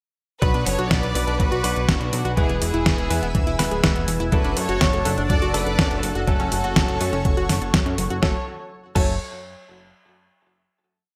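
A bright 1980s-style digital production with moderate plate reverb frames this bittersweet and melodramatic italo disco piece, driven by a thumpy, tape-toned four-on-the-floor electronic kick, an overdriven 8-bit drum machine with a fat snare, hi-hats and crash through gated reverb, and a glossy chorused synth bass running sequenced sixteenth notes with tube saturation. A clear, floating violin section carries a motif-based melody, bowed sul tasto and partly doubled in thirds with delay, while a round analog pluck cycles a 16-step arpeggio with 12-bit sampler grit in the background and a clean, direct-recorded electric guitar adds held drop-2 chords with syncopated pushes. A lush detuned pad joins at 1.0 s with slow-attack sustained chords under chorus and phaser, and the chorus section gives way at 8.2 s to a final chord.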